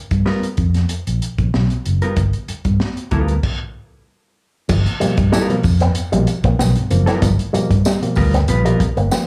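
A round, punchy fingered electric bass sits up front in this strutting funk excerpt at 95 BPM, alongside a crunchy breakbeat kit with a high-tuned snare, gritty saturation and dark cymbals, while a mellow, clean electric guitar with plate reverb and slapback echo plays accompaniment over a G7#9 chord. After a stop from 3.4 to 4.7 seconds, the band returns with a bright, twangy envelope-filtered guitar riff, worn and slightly out-of-tune electric piano stabs lightly overdriven through a combo amp in the background, and a jingly tambourine. The whole thing sounds like a live club gig heard through the venue's PA.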